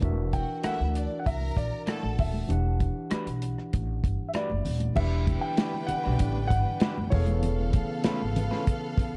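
A dark, smooth soul drum kit, growly pizzicato upright bass, barky overdriven tine electric piano and damped, high-tuned congas open this silky, cinematic 1970s-style soul piece in E minor at 97 BPM. From 0.3 seconds a concert grand piano with deep bass carries the melody over a clear, bowed string section, at 0.6 seconds a slightly broken-up, lo-fi electric guitar comes in with a picked riff, and a very quiet, airy vibraphone with soft mallets enters at 1.9 seconds. At 5.0 seconds a woody, dark string section adds sustained chords, and the production stays warm and dark with light small-room reverb.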